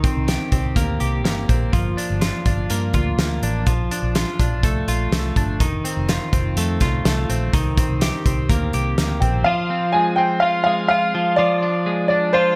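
A jangly, compressed twelve-string electric guitar rings out in clean, twangy arpeggios with a warbly pitch drift, giving this breezy, bright indie pop excerpt at 124 BPM its shimmer over a chord run of Cm7, Gm7, Bbmaj7 and F7. A loose drum kit with a fat snare and punchy kick in a pumping room sits up front beside a dark, round, foam-muted fingered electric bass, and both drop out around 9.3 seconds. Just before they stop, a woody, worn upright piano, slightly detuned and with long sustain, enters at about 9.2 seconds and takes the melody over Fm and Fm6 chords alongside the guitar, all under a light reverb.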